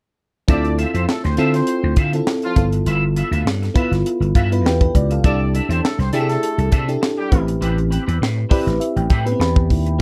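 Nocturnal and slick, this short cut from a polished 1980s jazz-funk pop track moves at 101 BPM in 4/4 with a light sixteenth-note swing, sitting in D dorian over a Dm9, G13, C69 and Am9 progression. A tight funk drum kit with a high-tuned snare and a tight kick sits up front beside a growly, punchy vintage slap bass that anchors the low end. The bell-like FM electric piano carries the accompaniment, its sparkling, fast-attack tones decaying through a lush chorus, and it steps forward with fills at 4.1 seconds and again at 8.2 seconds. A clean, picked semi-hollow electric guitar plays a riff treated with an ensemble chorus. Behind them, a distant, roomy horn section with light vibrato adds a second line until 7.4 seconds. Light reverb and a dark production give the whole a smooth late-night sheen.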